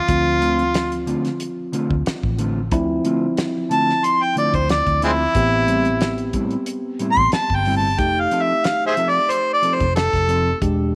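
A small, lightly reverberant room frames this mournful, soulful straight-eighth soul blues at 91 BPM, where an up-front overdriven harmonica sings the melody with light vibrato, scooped notes and tongue slaps over a clean tine electric piano, a dark foam-muted fingered bass, a dry 70s drum kit with fat snare and tight kick, and dark, clean fingered guitar stabs across Dm7, Am7 and F7 in this excerpt from a longer piece.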